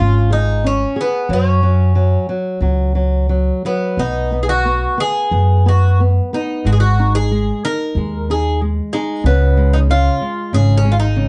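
Tender and nostalgic, this fado-style ballad fragment unfolds in a loose, rubato 4/4, with a picked Greek bouzouki carrying the melody up front, its metallic double strings and some octave-doubled courses ringing out. A fingerpicked flamenco guitar with a dark tone supplies the accompaniment, while a pizzicato upright bass, woody and growly on steel strings, sits prominently beneath, all three playing from start to finish across the 11.3 seconds. Light reverb and a warm, dusky production that rolls off the top end give the excerpt an intimate glow.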